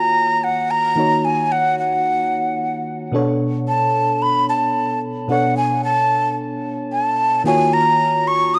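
Hypnotic and late-night, this short amapiano excerpt sways on a swung sixteenth-note feel, moving from Ebm9 to Bm9 at 3.1 seconds and back to Ebm9 at 7.5 seconds, where a drop arrives. A breathy jazz flute carries the melody up front, its soft-edged, unsteady tone with vibrato and lifted highs colored by cassette tape, plate reverb and analog delay. Beneath it, a mellow, warbling FM electric piano accompanies throughout with fast-attack, decaying notes and a vintage noise layer, set in the modest room sound of a home cassette recording.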